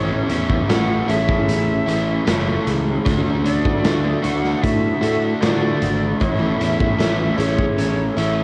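Blissful and dreamy, this brief shoegaze and dream pop cut at 76 BPM in A major sets a breathy, reedy jazz flute melody with vibrato, soaked in plate reverb and tape echo, over an up-front overdriven electric guitar riff with subtle chorus, a growling overdriven bass, a very quiet shimmering octave-doubled twelve-string acoustic playing arpeggios, a very quiet clean, dark electric guitar riff, and a raw, gritty garage drum kit with a tight kick entering at 0.3 seconds, all moving through Amaj7 and D with the haze of a home cassette recording.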